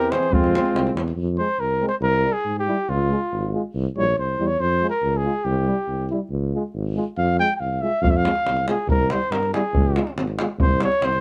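Close, detailed microphones and light reverb frame this restless, fiery cut from a longer Balkan brass band piece: a warm flugelhorn carries the melody up front only until 1.0 s, then a mellow trumpet with vibrato takes a classical-style solo from 1.2 s over a clear euphonium in the background, a distant, roomy trombone and a tuba bass with light vibrato, while a tight, vintage, band-limited davul drops out after the opening and returns at 8.0 s.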